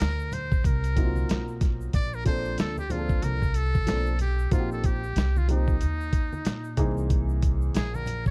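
Jazz-hop with a smooth, warm mood, this short cut from a longer hip hop piece moves at 93 BPM in 4/4 with a swung sixteenth-note feel in Bb major. A dusty, sampler-style drum kit sits up front with a thumpy kick, medium-tuned snare and hi-hat, its sound compressed, gritty and tape-warm, while a woody pizzicato upright bass anchors the low end. A dark, vintage upright piano enters at 1.0 seconds and stops at 7.8 seconds, adding mellow accompaniment, and bright, dry egg shaker and congas with hard hands stay in the background. A trumpet with a metal mute carries the melody throughout, buzzy and thin with vibrato and an analog delay, stepping into a jazz-style solo from 1.9 seconds. The harmony moves from Ebm6 through Bbmaj9 and Eb69/Bb to C7alt, all framed by a small room ambience, vinyl crackle and a dark, warm production.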